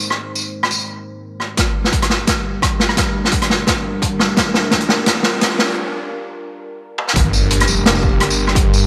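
A half-time drum and bass groove at 172 BPM in 4/4 with a light swing carries this dark, tense cut in G phrygian, opening on a deep, moody analog pad with chorus and sidechain pumping that holds sustained chords over Ab before moving to G minor at 1.6 seconds. An up-front vintage kit of hi-hat, rim click, medium-tuned snare, tambourine and toms plays with gated reverb, and a heavy electronic kick joins at 1.6 seconds for a build-up full of drum fills and a short break, while a very quiet riser and impact sit beneath. The drop at 7.2 seconds brings in a swirling, thick, saturated saw bass with phaser, all within a bright 1980s-style digital production and a small room with light reverb.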